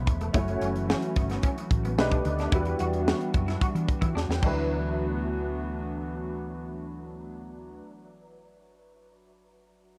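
A brief grand piano fill opens this upbeat, urban slice of polished 1980s jazz-funk pop at 110 BPM in D major, where a tight funk drum kit with a high-tuned snare, a round, punchy hollow-body bass, a twangy, slightly broken-up guitar riff with analog chorus through a small old amp, a hollow, flute-like soft pad, faint ringing congas and a present baby grand piano with ensemble chorus move through F#m7, B7alt and Em9 until a drum fill at 4.2 seconds leads to D69, after which the drums, guitar and congas drop out, the pad and bass stop at 7.8 seconds, and the piano plays alone to 10.0 seconds in a dry, polished sound.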